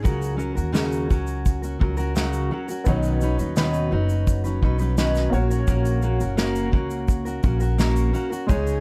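Heartfelt and carefree, this short acoustic pop excerpt moves at an easy, straight pulse in four. A full-bodied, fingerpicked steel-string acoustic guitar on a jumbo body sits up front beside a woody pizzicato upright bass, which has steel strings and a dark tone. An unplugged drum kit played with bundle sticks adds a punchy kick, a medium-tuned snare and a shaker, sounding airy and polished in a small room. Further back, a grainy, bright tube shaker adds a light sparkle. At 2.8 seconds a mellow, worn upright piano enters, slightly detuned and intimate, with its action noise clearly audible, as the harmony moves from F#/C# to Badd9 and back to F#. The production is dry and dark, with little reverb.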